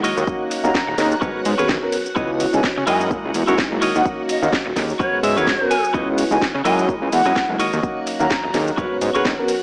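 Filtered disco house with a funky, nostalgic, swung groove, in which a fat, detuned sawtooth analog bass sits up front beneath a boxy grand piano coloured by phaser, lush vintage string-machine chords with ensemble chorus in the background, a bright, twangy clean electric guitar riff with a fill at 5.0 seconds, a punchy electronic kick from 0.3 seconds, and a house kit of metallic hi-hats, shaker and cracking snare, while a pure, distant silver flute carries an expressive vibrato melody from 0.6 seconds through diffuse ambient delay, most parts sidechain pumping in a dreamy, reverb-soaked hall mix with a small-speaker sound.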